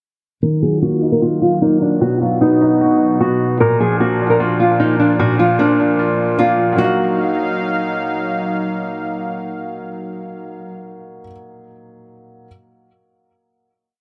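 A thumb-plucked nylon-string guitar sits up front, its small, acoustic tone and audible finger squeak carrying a looping melody that repeats like a sample until it stops at 7.9 seconds. This short, complete hip hop piece in Eb harmonic minor moves at 151 BPM with a half-time feel, and its mood is melancholic and menacing. Alongside the guitar, a felt-muted upright piano plays a rising and falling eighth-note arpeggio, soft, mellow and intimate, repeated like a sampled loop and lasting the longest of the parts. A detuned sawtooth analog pad with a slow attack holds smooth, warbling, vintage chords with chorus, moving from Ebmadd9 through B and Bb. A filter sweep runs through the opening breakdown before the return to Ebmadd9 at 6.8 seconds brings the final chord. The echo-heavy mix is lightly reverberant, and low-pass filtering and analog delay soften the guitar and piano.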